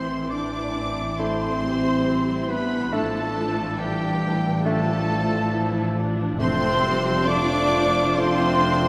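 Tender and warm, this slow romantic orchestral passage at 68 BPM in rubato 4/4 sets a vibrato-rich, focused violin melody over a second violin line, a clear, distant oboe, a hollow, very quiet flute, expressive viola accompaniment with portamento, sustained chords from the trombone and soft French horn sections, a smooth cello and double bass foundation, and a clarinet and mellow bassoon that join at 1.2 s, moving through Am, Dm/A and Dm7/F and bathed in a long church reverb.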